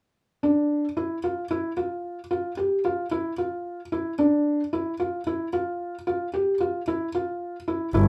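A close, intimate studio sound with a short, wet reverb frames this brief excerpt of contemporary instrumental music, hopeful yet restless, moving at 112 BPM in a straight 7/4. A felt-muted upright piano, mellow and dark with audible action noise, plays arpeggios between D4 and G4 from 0.4 s. At 7.9 s a bowed double bass enters up front on a rich, pure, floating G1 played sul tasto, just before the cut at 8.1 s.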